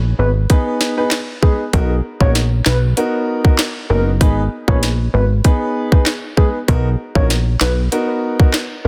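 A plucky analog bass opens this short dancehall excerpt in G# minor at 97 BPM. It is punchy and funky, with a sawtooth and square-wave edge, ring modulation and a filter pluck with a fast attack and a decaying tail. A soft octave-layered synth lead arrives at 0.2 seconds, round and dark over a sub octave, sitting in the background with chorus, vibrato and digital delay. At 0.5 seconds a boxy, warm baby grand piano and an electronic island pop drum kit come in together, the kit up front with a tight kick, sharp snare, metallic hi-hats and handclaps. The harmony alternates between G#m and Bmaj7 in a straight 4/4, setting a sultry yet tough mood inside a digital ambience and a dense, heavily limited modern master.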